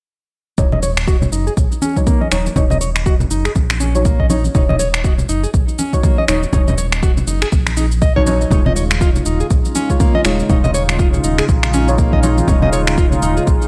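Afro house at 121 BPM in Eb minor, this hypnotic, warm excerpt rides a swung sixteenth-note feel from the start, with nearly every part entering together at 0.6 seconds. A deep, layered electronic kick sits at the front of the mix, joined by tape-saturated electronic cabasa and finger snaps, while soft-handed, thick-skinned congas sit in the background. A round, dark analog bass anchors the low end, its sustained, detuned tone breathing with sidechain pumping. Fingerpicked nylon-string guitar arpeggios with fresh, classical strings drift through a low-pass filter sweep and a diffuse ambient delay, alongside nasal, decaying chord stabs softened by chorus. The harmony holds on Ebm7 until 8.5 seconds, when it moves to Db/Eb and a smooth, detuned analog pad enters with chorus and tremolo, adding a brighter sustained layer. Light reverb and digital ambience frame the whole.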